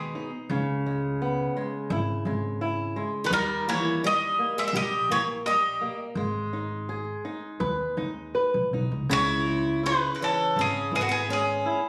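A fado-style ballad in G# harmonic minor at 84 BPM, this short excerpt from a longer piece moves with a rubato, longing and mournful feel, its chords passing from G#m through C#m and D# before a new section arrives at 9.1 seconds. A mellow bowl-back mandolin carries the melody up front with its double strings, while a bright, shimmering twelve-string acoustic guitar picks an octave-doubled second line and a fingerpicked flamenco guitar, also up front, accompanies with audible finger squeak. A woody, thumpy pizzicato upright bass anchors the low end, all captured on a phone in the room with moderate studio reverb and compression.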